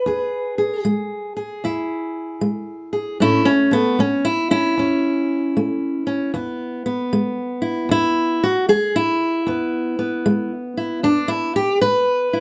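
The recording has an intimate, close sound, with a fingerpicked steel-string acoustic guitar placed up front in a small room whose reverb adds a noticeably wet, short-lived halo. This is a brief excerpt of acoustic country blues, laid-back yet rollicking, with a swung eighth-note feel in 4/4. The guitar plays alone for the full 12.4 seconds, its warm, concert-quality tone ranging from low bass notes up into the higher treble strings. The harmony moves from E to A at 3.2 seconds and returns to E at 6.3 seconds, giving the passage an easygoing country-blues sway.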